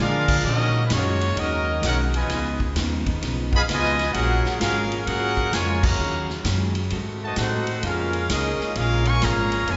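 Sultry and swinging, this big band swing excerpt moves at 130 BPM in 4/4 with a swung eighth-note feel. A clear, close-miked trumpet section carries the melody up front with light vibrato, while a soft-attacked trombone section sits in the background on a second line and a mellow saxophone section holds very quiet sustained chords with a smooth top. A clean, compressed hollow-body electric guitar picks out accompaniment in the background, and a woody pizzicato upright bass on steel strings stands up front. The drum kit enters at 0.3 seconds with a punchy kick, medium-tuned snare, hi-hat, ride and crash, and the whole band hits an accent at 5.8 seconds. The harmony moves from Ebm11 through Db9 and Gbmaj9 and back to Ebm11 before an Ab7b9 resolves to Db6, all bathed in a wet, hall-like reverb with a dark, rolled-off top end.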